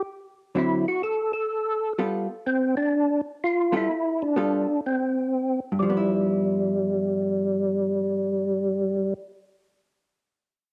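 Jazz in a bluesy, soulful mood, this short cut from a longer piece swings at 126 BPM in 4/4 in G mixolydian, tuned slightly flat of standard pitch. A percussive tonewheel organ carries the melody from the start, its fat, clean tone marked by third-harmonic percussion, audible key click, chorus vibrato and a slow rotary speaker, with a cassette-tape character on its sound. An electric hollow-body jazz guitar joins at 0.5 seconds as accompaniment, picked and compressed with a dark, clean voice, sitting up front alongside the organ but a little lower in level. The harmony moves from D9 to G9 at 2.0 seconds, then settles on G6 when a new section begins at 5.8 seconds. A moderate spring reverb and the soft grain of a home cassette recording give the brief passage an intimate, vintage feel.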